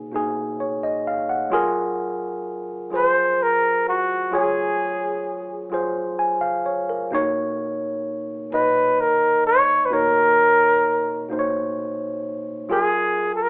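This R&B excerpt moves at a slow 43 beats per minute in dotted quarters, with a straight 6/8 feel in B lydian and a tender, warm mood. A worn tine electric piano carries the accompaniment from the first moment to the end at 13.5 s, slightly out of tune and lightly overdriven, sitting direct and up front. At 3.0 s a breathy flugelhorn enters with the melody, played solo in a jazz style with light vibrato and scooped notes, also placed up front and louder than the piano. The harmony moves between Bmaj9 and F#maj9. The two players sound as if they are performing live together in one room, bathed in a wet studio reverb and filtered through a thin telephone sound, and the passage is cut from a longer piece.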